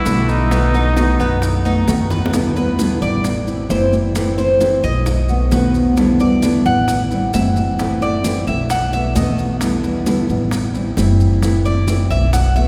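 Cuban son and guajira in E minor at 132 BPM, this warm, danceable excerpt from a longer piece opens with a breathy, whispered trumpet phrase with vibrato that ends at 1.9 s, and after a drum fill the metallic, double-strung Cuban tres takes a picked solo from 2.3 s over a dark, full-bodied fingerpicked nylon-string guitar, a woody, thumpy pizzicato upright bass up front, very quiet ringing high-tuned congas and round low-tuned bongos, and grainy, mellow maracas, all bathed in the long, wet reverb of a cathedral-like hall.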